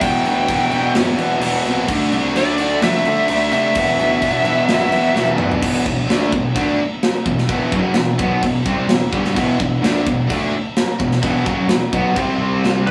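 Opening in half time, this aggressive, epic heavy metal excerpt in E minor at 128 BPM puts a dark, high-gain lead guitar melody up front over three picked, distorted and overdriven rhythm guitars riffing through Em and Dm, a growly fuzz bass, a tight, polished drum kit with bright cymbals whose fill at 5.2 seconds closes out the half-time feel, and a veiled, con sordino string section barely audible beneath, set in a rough small-room rehearsal sound, with the lead returning at 12.9 seconds as the cut ends.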